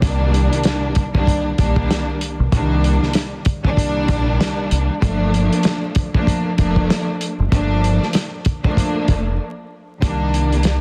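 A bowed string section sits up front with expressive vibrato and portamento, its smooth top roughened by cassette-tape character as it moves between Cm9 and Gm9 in C minor. Beneath it, a round, dark fingered electric bass and a dry, muffled soul drum kit with a tight kick, medium-tuned snare, hi-hat and vintage 12-bit sampler grit drive a tough, shadowy boom-bap groove at 96 BPM with a swung sixteenth feel, reaching a brief break at 9.4 seconds. The small room ambience, vinyl crackle and dense, heavily limited master give this fragment of a longer piece a crackling, compressed finish.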